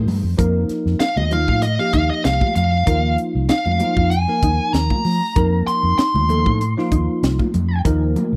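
A tight, dry funk kit with a high-tuned snare and lightly swung 16ths drives this soaring, slick electric jazz fusion fragment at 97 BPM in F mixolydian over a held F7sus4, with distant, high-tuned congas in the background, a round, up-front fretless bass, bell-like tine electric piano chords through analog chorus, and mellow, compressed clean guitar stabs tucked behind, while a dark, overdriven, picked lead guitar enters at 1.0 s with a smooth solo in a close, 1970s-style studio sound.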